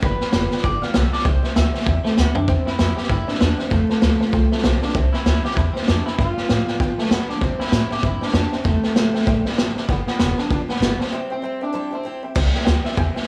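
Rockabilly with a retro, rollicking swing, this short cut from a longer piece rides a shuffled eighth-note feel over a simple three-chord progression. A twangy, slightly broken-up electric guitar through a small old amp carries the melody, its bright tone trailed by an analog delay. Underneath, a woody, thumpy pizzicato upright bass and an up-front vintage drum kit, gritty and saturated with dark cymbals and a tight kick, drive the groove. A detuned, jangly honky-tonk upright piano sits in the background, while a full-bodied picked dreadnought acoustic guitar, very quiet in the mix, adds finger squeak from fresh strings. A drum fill at 2.2 seconds launches the main section, and a break arrives at 11.1 seconds, with light reverb giving the whole band a small-room feel.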